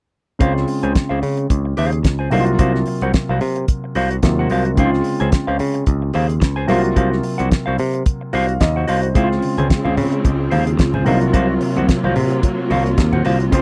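A dry, close 1970s-style studio sound frames this celebratory, glamorous disco passage at 110 BPM in 4/4, with a lightly swung sixteenth feel and chords moving between Dbmaj7 and Ebm69/C. Up front sit a damped drum kit with a fat snare, tight kick and hi-hat, and a bright, growly picked bass, while a dark, fingered clean electric guitar and an intimate grand piano with audible action noise fill out the accompaniment. After a piano fill at 8.1 seconds, a lush bowed string section with vibrato and soft attack enters at 9.2 seconds alongside very quiet, low-tuned congas.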